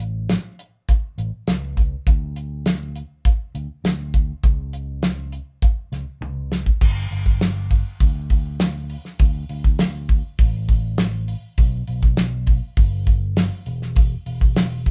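Warm and open-road in spirit, this short folk rock and heartland rock cut sets a damped 70s drum kit, dry, airy and up front with a fat snare, a tight kick, hi-hat, crash cymbal and toms, over a punchy, amped fingered electric bass sitting lower in the mix, all captured as a band playing live in one room with light reverb, and a drum fill from 6.2 to 6.8 seconds carries the first section into the second.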